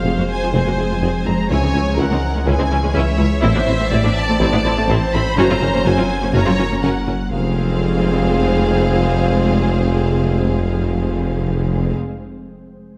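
A rich, vibrato-laden double bass section drives this futuristic, relentless hybrid orchestral and electronic film-score passage at 124 BPM in F phrygian, joined by a thick, saturated sub bass and a solo tuba, while lush bowed violins carry a smooth melody over a second violin line, a focused viola accompaniment and dark, distant cellos. A very quiet, shadowy French horn section and an ethereal, airy detuned pad hold sustained chords, all set in a wet scoring-stage reverb on this piece cut from a longer work.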